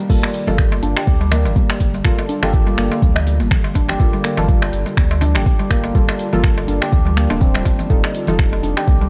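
This afro house cut opens on a very quiet, ethereal pad holding sustained chords, with a ringing, meditative handpan playing arpeggios, a soft, mellow chord stab colored by chorus and cassette tape, and an afro-pop kit of metallic hats, finger snaps, shaker and crash. A round sine sub bass enters at 0.1 s alongside a deep, up-front electronic kick, and congas and darbuka join at 0.2 s. The handpan, chord stab and sub bass pump under sidechain compression, while the handpan and stab also trail delay. The darbuka is crisp, dry and metal-shelled, and the very quiet congas sound damped and high-tuned, both struck with hard hands over a swung sixteenth feel in 4/4. The harmony rests on Gm9 until a turn to F7 at 7.9 s, sustaining a warm, spiritual mood.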